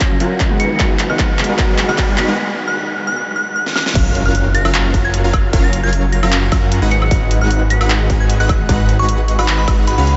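Future bass at 152 BPM in a half-time feel with a light swing, bittersweet and dreamy in G# dorian, where a punchy detuned supersaw stab riff and a thick, chorused saw bass pump under an overdriven, up-front kick and a big-room kit with a huge snare, while a soft felt-muted upright piano murmurs with audible action noise until 2.4 s, a crystalline FM bell carries the melody through a diffuse delay, and a very quiet riser builds over a drum fill into a brief break before the drop and impact land at 4.0 s, all bathed in a huge, dark-topped reverb in this excerpt from a longer piece.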